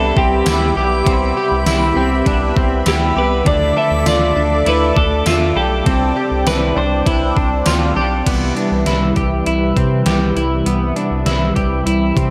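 Ethereal and blissful, this dream pop fragment sets a twangy twelve-string electric guitar melody, bathed in spring reverb and tape echo, over a bright clean electric guitar in the background under harmonic tremolo, both falling away by 8.3 seconds, while a chorused warm analog pad, up-front semi-hollow electric guitar arpeggios, a deep saturated sub bass and a thumpy, overdriven gated 80s digital drum machine carry on to 12.3 seconds, a reversed, granular backwards swelling texture hovers faintly until 3.7 seconds, and a lush hall reverb lends a big arena sound.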